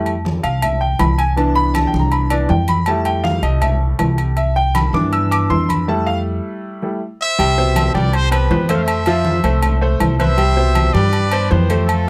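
This sunny, danceable salsa excerpt in C major opens at 160 BPM with a brilliant, present grand piano soloing over a woody, thumpy pizzicato upright bass up front. Ringing agogo bells and timbales sit dry, while soft-handed congas sound distant in a large room. A break arrives at 5.9 seconds, and at 7.2 seconds a tight, mellow trumpet section enters with the melody, its light vibrato and punchy pop-style attack leading the second section over chords alternating between Fmaj7 and Cmaj7, all captured with close, detailed microphones and little reverb.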